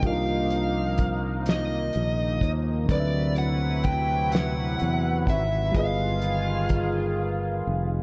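A dreamy mix soaked in lush hall reverb frames this late-night, sultry fragment of slow six-eight R&B at 42 BPM, moving through Cm11, D13 and G7b9b13. A smooth, overdriven lead guitar carries the melody through diffuse ambient delay, while a reedy, bright electric piano with phaser sits in the background and a shimmering, retro pulse-width pad with chorus holds sustained chords. A growly fingered electric bass plays up front, and a cloth-damped, thuddy drum kit with a fat snare and tight kick plays until 6.9 seconds.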